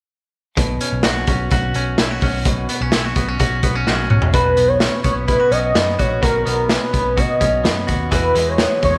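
Clean, twangy electric guitar arpeggios, a foam-muted picked bass and a gritty garage drum kit all enter together at 0.6 seconds, setting up a bright, nostalgic stretch of jangly indie pop cut from a longer piece. The direct-recorded guitar sounds crisp and compressed, with a slapback echo on its picked lines, while the dark, round bass sits underneath over a Bsus2 chord. The drums are up front, with a punchy kick, a medium-tuned snare, hi-hat and toms in a small, pumping room, saturated and rolled off at the top. A drum fill leads into the second section at 4.3 seconds, where the harmony moves to Badd9 and a velvety synth lead takes the melody, smooth and sustained with chorus, vibrato and its own slapback echo. Near the close the chords shift to Eadd9, all within a light reverb and a natural studio ambience.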